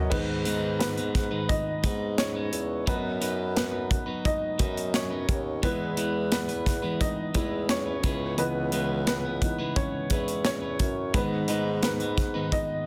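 Piano-driven pop in G# minor at 87 BPM, this driving, earnest fragment of a longer piece moves through G#m, B/F#, E and C#m7 before returning to G#m, with a dark, intimate baby grand up front whose action noise is audible as it takes a solo from 0.1 s. A clean, picked electric guitar riff and a warm bassoon carrying the bass line with light vibrato in classical style sit beneath it, while a polished studio kit with a punchy kick, medium-tuned snare, hi-hat and crash drives the beat. The sound is dry, with a dense, heavily limited modern master.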